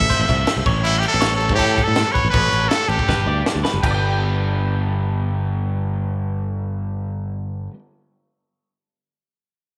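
A brilliant, forceful trumpet leads up front with vibrato and scooped notes, carrying a tape-echoed pop-style melody through the first 3.5 seconds of this playful, intricate math rock and midwest emo excerpt in G lydian at 161 BPM. Around it, a clean, compressed twelve-string electric guitar picks arpeggios, a crunchy, double-tracked overdriven guitar plays a riff in the background with spring reverb, and a growly, direct fingered bass sits up front. A crisp fusion drum kit with a high-tuned snare and punchy kick plays in a pumping small room, closing with a fill from 3.1 to 3.8 seconds before it stops, while the guitars and bass continue to about 7.7 to 7.8 seconds.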